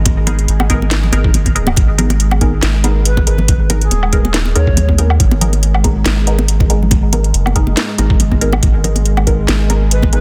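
A swung half-time groove at 140 BPM in G# minor drives this heavy, cavernous deep dubstep piece, built on a gritty, pitched-down thumpy electronic kick, a garage drum kit with cracking snare, metallic hats and woodblock, and bright, high-tuned congas sitting dry in the background with dub echo. An up-front, round sub bass holds the low end beneath a dark, chorused ambient pad sustaining a G#madd9 chord, while muted, detuned chord stabs with filter pluck and phaser punctuate the mix through dub echo. At 3.1 seconds a distant, airy shakuhachi with vibrato and 12-bit sampler grit drifts in briefly, returning at 9.9 seconds, all within a dense, heavily limited modern master.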